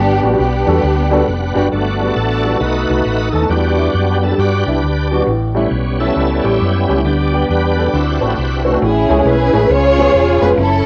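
Lush, bowed strings with cassette-tape color open this reverent, jubilant gospel excerpt at a swung 135 BPM in G major over woody upright piano, a round, punchy hollow-body electric bass and sustained chords from a bright, shouting tonewheel organ with key click, light overdrive, chorus vibrato and slow rotary speaker. The organ then takes a solo from 1.7 to 8.8 seconds, after which the expressive strings return in a small room with light reverb.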